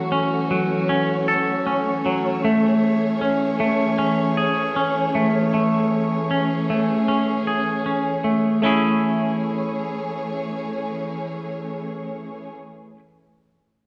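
Rock at a slow 78 BPM in A major, this cinematic, soaring fragment pairs a clean, twangy electric guitar, picked in arpeggios up front, with a bowed string ensemble holding expressive sustained chords full of vibrato and portamento, moving from F#m7 to Amaj7 in a church-like hall reverb, until the strings stop at 12.5 seconds and the guitar plays on alone to 13.0 seconds.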